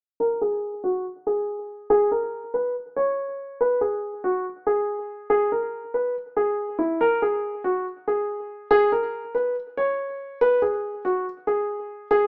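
A dark, mellow baby grand piano sits up front with intimate, audible action noise and short sustain, playing a tense melody between E4 and C#5 from 0.2 to 12.3 seconds through a low-pass filter that sweeps across the whole passage, in this brooding half-time hip hop excerpt at 141 BPM in G# minor, tuned to A4 = 438 Hz and given light reverb in a rough home-demo mix with a small-speaker sound.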